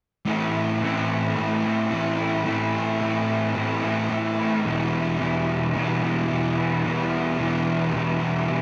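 A straight 4/4 rock riff, cut from a longer piece, sets a raw, lo-fi garage guitar, overdriven and laced with reverse reverb, against a dark, thick fuzz guitar soaked in lush chorus, both picked and placed up front from 0.3 seconds as the chords shift from Am to Em at 4.7 seconds, all within a light digital ambience that gives the moment a dreamy, melancholic cast.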